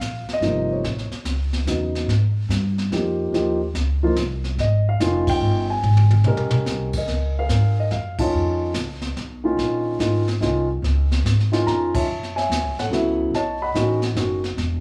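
A dark, mellow grand piano carries the melody over thumpy, woody pizzicato upright bass and a brushed vintage kit with dark cymbals and a punchy kick from the very start of this relaxed, swinging jazz piano trio excerpt in 3/4 at 144 BPM, played live together in a large studio room with moderate reverb, punctuated by band accents and a drum fill at 5.8 s, moving from Ab major to Db major at 7.1 s, with the piano dropping out at 14.4 s as bass and drums carry on briefly.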